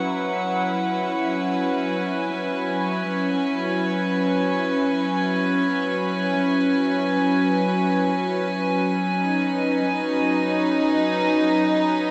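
In free time and tuned to A4 = 439 Hz, this luminous, weightless ambient excerpt sets a dark, sul tasto studio string section of close, up-front bowed chords over a very quiet drone of evolving, sweeping overtones and a glassy, drifting harmonics texture high above, all bathed in a huge reverb with a 7.2-second decay as the harmony moves from F#7sus4 to Badd9/F# at 8.7 seconds.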